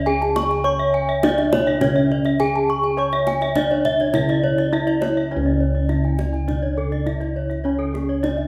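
A close, dry bronze metallophone struck with a wooden mallet carries the melody, its paired tuning producing shimmering beats in this brilliant Balinese gamelan passage in C# pelog, cut from a longer piece at a straight 103 BPM in 4/4. Two more bronze metallophones played with horn mallets spin ringing arpeggios above it, one with an airy shine, the other entering at 0.2 seconds. Round, beating bossed gongs carry the bass up front, and a tight, hard-handed kendang joins at 0.2 seconds, all set in the lingering reverb of a recital hall.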